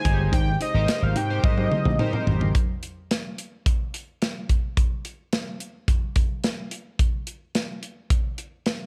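A punchy, bright slap bass sits up front in this slick, funky early-eighties boogie funk cut, moving at 108 BPM in a straight 4/4 over an Abmaj7 chord from 0.3 seconds. A fat, nasal analog lead carries the melody with detuned sawtooth tone, ring modulation, vibrato and slapback echo, while a glossy chorused polysynth built from pulse, sawtooth and triangle waves fills in the accompaniment. A mellow, dark electric guitar riff with subtle chorus stays in the background, and a very quiet chamber organ with sparkling flute stops adds light sustained chords with a touch of chiff. A modern studio drum kit with a medium-tuned snare and rolled-off top plays a fill from 1.4 to 2.5 seconds. At 2.5 seconds the harmony drops out, and only the drums carry on until 8.8 seconds in a dry sound with little reverb.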